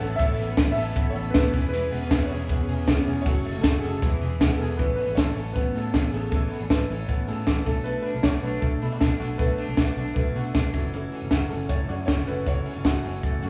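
Opening at once with a woody, slightly detuned upright piano carrying the melody over a bright jumbo acoustic guitar, mellow chorused synth keys, arpeggios from a slightly broken-up lo-fi electric guitar and a round, foam-muted bass, this bright, breezy, jangly indie pop piece in A major at 156 BPM adds an up-front cocktail drum kit with a punchy kick at 0.2 seconds, while floating bowed strings hover in the background until 4.8 seconds, the band sounding live together in one room under a moderate large studio reverb.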